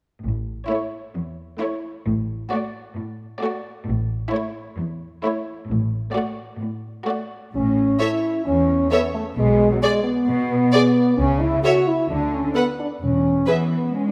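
A straight 4/4 pulse at 131 BPM in A major drives this playful, whimsical and quirky cinematic cue, where a warm cello section and distant double basses carry the bass, a focused violin section sings the melody above a smooth second violin line and lush viola accompaniment marked by portamento, and at 7.5 seconds a clear, punchy French horn section enters up front with sustained chords, lending a magical lift within the moderate reverb of a scoring stage.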